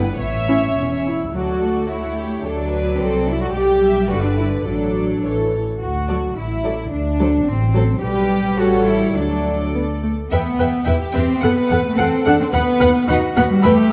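A dark, warm production places a string orchestra in a concert hall with moderate reverb, the low strings sitting up front. This is a quick, graceful and spirited classical-period movement in 2/4 with a straight feel, cut from a longer piece. A violin section carries the melody with a soft, sul tasto tone that sounds pure and floating, entering at 0.2 seconds, while a second violin section plays a rich, more distant second line. The dark viola section supplies a woody, lush accompaniment with vibrato and a smooth top. Beneath them, a rich cello section and a double bass section form the bass, both bowed sul tasto with a soft attack. The harmony dwells on major-key chords through its middle stretch, then turns to a minor colour at 10.3 seconds and moves toward a B/D# chord at 12.5 seconds.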